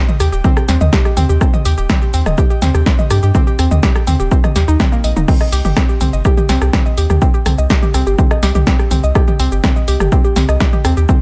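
Dark and hypnotic, this melodic techno excerpt moves at 124 BPM in a straight 4/4, centred on C minor, with its harmony resting on Eb before shifting to Cm at 5.3 seconds. A woody, wave-folded pluck carries the arpeggios from the very start, its mellow, percussive tone blending triangle, sine and sawtooth colours with a noise layer, a filter sweep and a fast, decaying attack, and it is treated with chorus, digital delay and sidechain pumping. A punchy analog drum machine with a tape-warm, punchy snare also supplies crash cymbal, hi-hat, rim click, shaker and toms, while an electronic kick drum, punchy and up front, enters at 0.4 seconds. Underneath, a round analog bass sits deep and sustained in the low register, its triangle and sine tone shaped by a filter sweep and pumping against the sidechain. The mix is dry and close, with little reverb, so the bass and kick dominate the foreground of this short cut from a longer piece.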